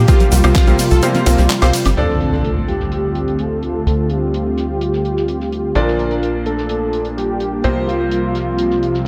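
A light reverb gives this bittersweet, emotional progressive house excerpt a gentle sheen at 127 BPM in D minor, where a thick, detuned unison lead carries the melody over a smooth analog pad and a tight, nasal sequencer bass, both pumping with sidechain, while a bright concert grand piano with audible action noise adds delayed stabs. The opening drop stacks an overdriven electronic kick, a deep house kit of handclaps, hi-hat, ride and woodblock, a grainy tube shaker, very quiet congas and a lush, phased pluck arpeggio, with the kick dropping out at 1.0 seconds. At 2.0 seconds a background impact marks the shift to Dm7, and a cloth-damped, thuddy acoustic kit with a fat snare and rolled-off top carries on through the Bb and C7sus4 chords.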